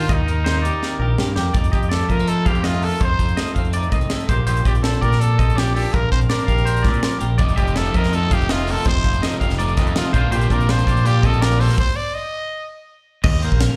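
Heard live through a club PA, this intricate, playful math rock and midwest emo excerpt sets a raspy, growling trumpet melody over a bright, chorused twelve-string electric guitar, twangy tremolo-laced arpeggios, an overdriven fingered bass and a crisp, punchy fusion kit whose fill at 0.8 seconds launches the groove, while a crunchy, double-tracked overdriven guitar riff joins in the background from 7.4 seconds until the band stops at 11.8 seconds.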